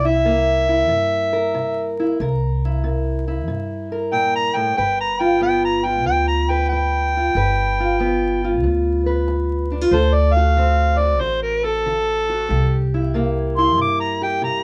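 Swaggering and soulful, this short cut from a longer acoustic country blues piece rolls along at 93 BPM in 4/4 with a swung eighth-note feel. An overdriven, amplified harmonica carries the melody up front, its gritty tone marked by tongue slaps, scooped notes and a jazz-inflected solo style. Beneath it, a fingerpicked steel-string parlour guitar gives dark, boxy accompaniment, while a pizzicato upright bass with steel strings adds a woody low end, both also sitting close in the mix. All three play throughout the 14.6 seconds, moving through C7, G7 and D7 before returning to C7 at 12.5 seconds. Light reverb and a layer of vinyl crackle lend the recording an aged, lived-in atmosphere.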